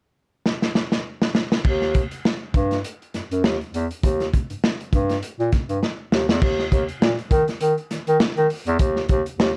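A warm, punchy bass clarinet takes the low line from 1.6 seconds, sitting up front in a vintage, classical-style solo voice over a crunchy breakbeat drum kit of kick, snare, hi-hat and crash cymbal. This gritty, playful funk cut has a swung sixteenth-note feel, with saturated, small-room drums that have a tight kick and darkened cymbals. The kit opens with a fill at 0.5 seconds and drops another fill just before the final section at 6.4 seconds, all wrapped in a dark production with light reverb.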